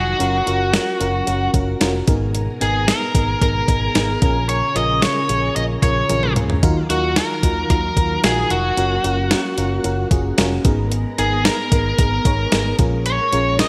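A clean 12-bit drum machine with a thumpy kick and a medium-tuned snare drives this urgent, nostalgic 1980s-style pop excerpt at 112 BPM in a straight 4/4, entering at 0.2 seconds with a fill from 6.1 to 6.6 seconds, under a biting overdriven lead guitar melody with digital delay, a glassy, bell-like FM electric piano with chorus and tremolo, a very quiet, warbling ensemble organ-string pad, and a round, dark fretless bass, all moving through Gbmaj7, Abmadd9, Bbm7 and Ebmadd9 in a lush 2.0-second hall reverb with bright digital production.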